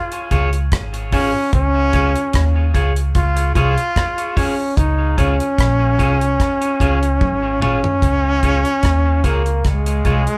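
A brilliant, close-miked trombone opens this laid-back roots reggae excerpt at 0.0 seconds, carrying the solo melody up front with a pop-style vibrato and a punchy attack. An acoustic reggae drum kit sits dry and deep underneath, with a tight kick, hi-hat, rim clicks and toms. A vintage fingered electric bass, foam-muted and amped, adds a dark, round low end that stays prominent in the mix. Further back, an electric guitar at the edge of break-up supplies twangy, slightly gritty accompaniment treated with dub echo. A drum fill at 7.2 seconds leads into a new section at 8.0 seconds, and the whole band plays live together in one room under moderate studio reverb, giving the groove a warm, relaxed feel.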